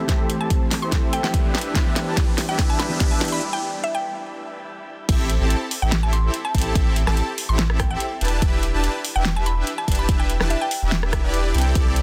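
A half-time 4/4 pulse at 144 BPM drives this dreamy, emotional future bass clip in A minor, where a punchy, tape-warm electronic kick and a pop drum kit with a fat snare and metallic hats sit under a smooth, detuned supersaw riff with a filter sweep, a woody, round mallet-like synth pluck melody with chorus and delay, a dark, clean electric guitar in spring reverb, and a very quiet shimmering ambient pad, all building with a riser to a break at 3.4 seconds before a deep, thick saturated sub bass joins the pumping drop at 5.1 seconds in a dense, heavily limited mix.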